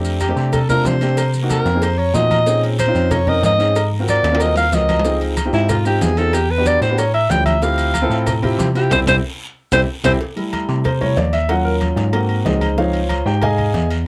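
Lively and sophisticated, this Afro-Cuban jazz excerpt opens with a breathy, whispered alto saxophone solo, clear and intimate with vibrato and a soft attack, carried over a bright, bell-like tine electric piano playing the bass line up front and a dark, mellow baby grand piano comping with long sustain through rich extended chords. Beneath them sit ringing agogo bells and timbales, low-tuned congas with a thin skin, a round and very quiet cowbell, and a raspy guiro and grainy maracas with a vintage, band-limited tone. A drum fill arrives at 4.2 seconds, and another fill with a band accent at 8.9 seconds closes out the saxophone's turn. At 10.2 seconds the grand piano takes the solo, all captured with close, detailed microphones and light reverb.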